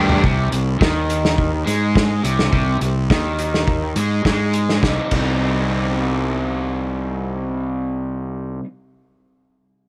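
A loose acoustic indie drum kit opens on a fill in a straight 4/4 at 104 BPM, with a punchy kick, medium-tuned snare, hi-hat, toms and dark, rolled-off crash in a pumping studio room, until it drops out at 5.3 s, while a warm, picked garage guitar riff with raw overdrive and a round, dark fingered bass thick with fuzz sit up front through this moody, cool indie rock passage in C minor, cut from a longer piece and running to 8.7 s.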